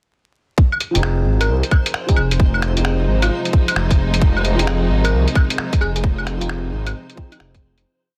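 Future garage in F minor at 132 BPM, rainy and melancholic, with a shuffled swing: a tight, muffled two-step electronic kick sits up front beside a compressed, pitched-down sampler kit of closed hi-hat, claves and finger snaps, while a menacing detuned saw bass with tube saturation drives a dub-style line and pumps with sidechain compression. Soft felt-muted upright piano stabs echo through digital delay in the background, a sparkling bell-like FM electric piano adds short chorused phrases with a cassette-tape tint, and a reversed, dreamy backwards texture holds a high C5 under its own reverb. A lush symphonic string section enters at 2.4 seconds with expressive, vibrato-rich sustained chords over Fm7, and the dense, heavily limited master with vinyl crackle begins a fade-out at 5.4 seconds that runs to the end at 7.9 seconds.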